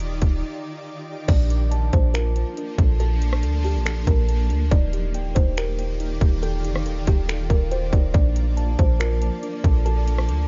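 Atmospheric cloud-rap hip hop at 140 BPM in a half-time 4/4 feel, floating and blissful in Bb major, where a shimmering, ethereal ambient pad with chorus and pumping sustains chords over a deep, boomy sine 808 bass and an up-front trap kit of hard-clipped kick, metallic hats, snaps, rim clicks and crash carrying 12-bit sampler grit, with a break from 0.4 to 1.3 seconds before a woody, hollow kalimba melody with delay and muted, felt-like synth key arpeggios enter at 1.3 seconds, all in a dark, dry mix cut from a longer piece.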